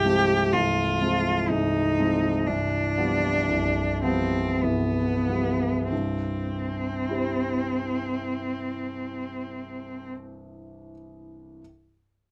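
A bowed cello with a rich, focused tone and vibrato sings a yearning melody over a clear concert grand piano whose deep bass and long sustain fill out the accompaniment, both up front in a close, detailed recording with light reverb. This solemn romantic classical passage, cut from a longer piece, moves in a rubato 3/4 at 43 to 63 BPM, slowing through its opening as the harmony passes from Fm/C to G7/C before settling on C at 5.9 seconds. The cello falls silent at 10.1 seconds, leaving the piano alone until 11.6 seconds.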